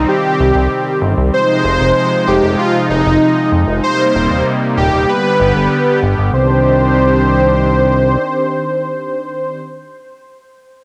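A straight 4/4 pulse at 96 BPM carries this nostalgic, cinematic synthwave passage in C minor, cut from a longer piece, moving through Cm, Fm7, Eb6 and G before opening onto Cmadd9 at 6.3 s. A smooth, detuned supersaw lead with a sub octave carries the melody through cassette tape and tape echo. Beneath it, an analog pad holds sustained chords with chorus and tremolo, and a glossy, nasal synth bass with a plucky filter and tube saturation drops out at 8.2 s, all set in a moderate spring reverb with the character of a home cassette recording.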